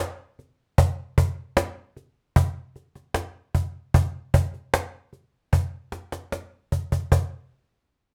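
Pop with an easy-going, sunny mood, carried by a lone acoustic cajon that enters at 0.4 seconds with a snappy, snare-laced tone, close and dry and up front in a moderately reverberant studio room, playing a straight 4/4 groove and a fill from 5.5 to 7.1 seconds before stopping at 7.3 seconds in this short cut from a longer piece.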